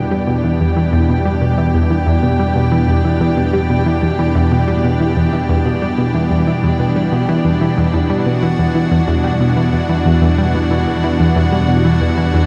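Expansive and cosmic, this ambient, sequencer-driven space music moves at 92 BPM in E minor, resting on a single Em7 chord throughout this short section of a longer piece. A round, sawtooth analog pluck with a fast attack carries the riff, treated with chorus and tape echo, while a thick, detuned unison pad holds sustained chords up front. Beneath them an evolving pulse-width-modulated analog drone anchors the bass on E2, and a very quiet, breathy wind-like noise texture drifts through, all bathed in a 2.0-second concert hall reverb and a dark production.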